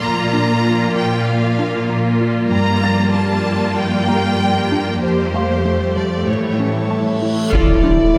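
A straight 4/4 pulse at 96 BPM drives this futuristic, vast hybrid orchestral and electronic film-score excerpt, where a lush, expressive violin section carries the melody over a bright, intense viola section, an up-front cello section bass, an airy, breathy chorused pad, a faint glassy, warbling wavetable pluck arpeggio and intimate, clear grand piano textures, moving from Bb through Gm7 and Fadd9 to A, before distant French horns enter at 6.6 s, a huge, dark reverse cymbal rises at 7.1 s, and at 7.5 s a soft-attack second violin line, a snarling distorted saw bass, a background impact and heavy-stick taiko drums land on Dm, all inside a moderate concert-hall reverb.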